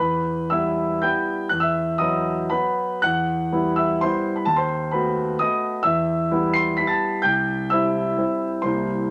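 A concert grand piano plays alone from the first moment, shaping a capricious, wistful romantic dance in triple time with dotted rhythms and elastic rubato. Its tone is warm and up front, with deep bass and long sustain ringing into a moderate studio room. The harmony keeps returning to the home minor chord before turning toward C and C7 near the end of this 9.1-second fragment of a longer piece.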